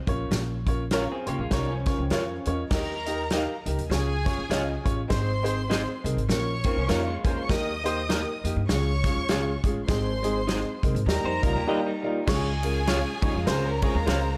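A dark, warm production with light studio reverb frames this short cut from an uptempo 1960s-style soul track at 100 BPM in 4/4, swung on the eighth notes, with a danceable feel. An upright piano with boxy tone and audible action noise sits up front alongside a natural, small-room country drum kit with a punchy kick, a medium-tuned snare, hi-hat, ride and crash. A woody pizzicato upright bass on steel strings anchors the low end, and the piano plays a fill from 0.9 to 2.7 seconds. Two electric guitars through a small old amp add a slightly broken-up, picked texture: one plays a dark riff in short bursts with a warbly pitch drift, while the other adds bright, compressed, lo-fi stabs tucked in the background. From 2.7 seconds a lush, bowed violin section enters with expressive vibrato on a second line, carrying the music over a Bbm, Eb, Db and Ab progression, with the warm ensemble sound filling out the arrangement.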